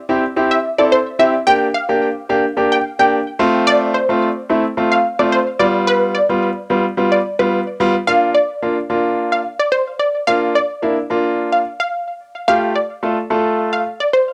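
Carefree and upbeat, this short pop passage at 109 BPM sets a lush, detuned, punchy synth pluck melody with tape echo over clear grand piano accompaniment, both parts up front and colored by cassette tape, in a moderate studio reverb with a homemade cassette character as the chords move from C through Gm, F and G7 before a second section on Bb and Fadd9 from 8.1 seconds.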